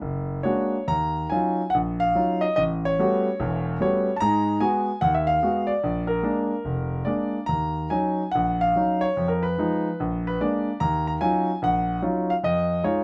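A solo concert grand piano opens on an altered Bb7 chord before settling into Eb minor, playing a swinging, late-night jazz passage at 146 BPM in 4/4 with a loose, rubato swing feel. Its clear, up-front tone spans a deep bass down to E1 and reaches as high as Bb5, moving through Ebm9, A13, Abm7, Fm7b5 and Bb7 changes. Light reverb leaves the sound natural in this 13-second fragment cut from a longer piece.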